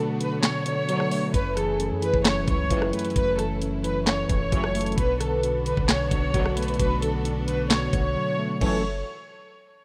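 A rough home-demo mix with light reverb frames this eerie, dark half-time trap fragment, where a mellow tine electric piano and lush background strings open together, a dark, intimate violin section with delay carries the melody from 0.2 s over the knocking kick, sharp snare, handclaps and bright hats of an up-front trap kit, smooth-topped brass stabs slip in, a deep sine 808 bass arrives at 1.3 s, and a detuned, gliding portamento lead with chorus and delay hovers behind as a second line.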